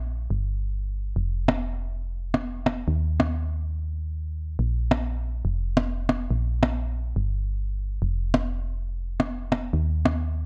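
Light reverb gives this short excerpt of uplifting trance a touch of space, with an emotional, driving mood at 140 BPM in a straight 4/4, tuned to A4 = 438 Hz. A solid FM bass opens alone, punchy, round and dark with a fast attack and decaying notes sitting up front between F1 and Eb2. At 1.5 s layered electronic percussion blips join up front, with low-pass filtered hats, snare and percussion, and they stop at 10.1 s while the bass carries on to 10.5 s.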